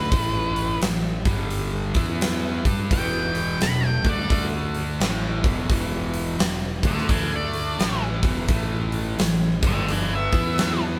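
This raunchy, gritty blues rock and southern rock excerpt opens with lead guitar, riff guitar and bass entering together at 86 BPM in a swung 4/4. An octave-fuzz lead guitar carries the melody in a dark, fuzzy tone, while a bright, scooped, double-tracked distorted electric guitar drives the riff up front. Beneath them, a growly fingered bass with overdriven fuzz adds a punchy low end, and a huge arena drum kit lands just after the start with a fat snare, punchy kick and hi-hat sitting prominently in a hall-like space. At 2.9 seconds a second lead guitar through a small cranked amp slips in behind the others, its overdriven line tucked in the background. The riff moves through power chords on A, G, E and D with a brief Em7, and the band sounds as if playing live in one room with light reverb.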